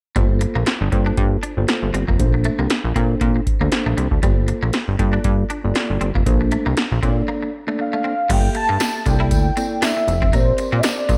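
Early-eighties boogie funk at 118 BPM in G dorian, this short slice of a longer piece feels danceable and slick, its sixteenths carrying a light swing. A dry, electronic drum machine sits up front with a deep kick, punchy snare, metallic hats and crash, while a plucky analog bass with a fast, decaying filter pluck and funky sawtooth-and-square bite holds the low end alongside it. A mellow tine electric piano comps through Gm11 and Bbmaj9 changes, and a bright, twangy clean electric guitar picks a compressed riff, thickened by ensemble chorus. During a break from 7.3 to 8.3 seconds, a velvety synth lead built from detuned unison sawtooth and triangle tones enters at 7.8 seconds with vibrato, chorus and tape echo, sustaining its melody as the harmony shifts through Gm69, C13 and Bb69. A jingly tambourine joins at 8.8 seconds, sounding distant as if in a large room, and a moderate plate reverb gives the mix a dreamy, soaked glow.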